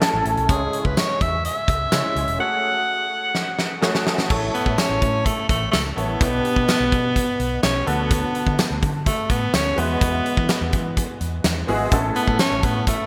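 A bright alto saxophone carries the melody up front in this short cut from a longer 1980s-style pop piece, its pop-style solo line touched with light vibrato and a trail of delay. It sits over a huge arena drum kit that sounds natural and roomy, with a punchy kick, fat snare, bright cymbals and tambourine, and a drum fill from 3.3 to 4.3 seconds leads into the second section. A vintage muted fingered electric bass adds a dark, round, foam-muted low end, while a baby grand piano with a polished tone, long sustain and ensemble chorus fills out the accompaniment. The tempo is a straight 126 BPM in A major, moving from C#m and F#madd9 into a progression through A, G/B, D and Eadd9 before returning to A. A lush hall reverb and glossy digital production give the whole a nostalgic, shiny feel.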